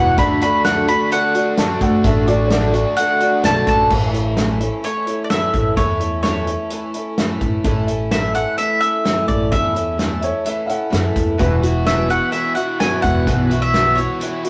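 Folk rock with a heartland rock lean, this nostalgic, hopeful excerpt moves at 128 BPM in A major, with a bright, up-front bowl-back mandolin carrying the melody under a slapback echo, soloing over the opening seconds as a picked, shimmering twelve-string acoustic guitar, a growly pizzicato upright bass and a natural country drum kit with a fat snare and punchy kick fill in beneath it. An overdriven, double-tracked electric guitar plays a riff at the start and returns at 11.4 s on an Esus2 chord, while an intimate upright piano with audible action noise adds brief second lines in the upper register. The rough rehearsal-room recording sits in a moderate stone room reverb.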